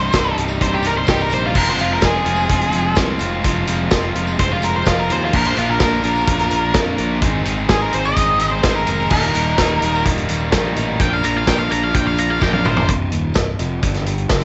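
A dark, fuzzed lead guitar sits up front, carrying a solo melody with distortion and a slapback echo over a swaggering, brooding classic rock groove in C minor at 127 BPM. Beneath it, an overdriven semi-hollow guitar and a tight, bright distorted guitar play riffs in the background, while a growly, punchy fingered electric bass holds the low end. A vintage acoustic drum kit enters at 0.1 seconds with dark cymbals, a medium-tuned snare and a tight kick, sitting mid-forward in a studio room, and a very quiet, jingly tambourine shimmers close by. The chords move from Cm through Fm, Bb, Ab and Eb, and a drum fill at 12.4 seconds leads into a brief closing passage where the lead and the tight distorted guitar drop out at 12.9 seconds, leaving the hollow-body guitar, bass, drums and tambourine to land on Cm and G5. The mix has light reverb and a small room ambience, with a rolled-off top end.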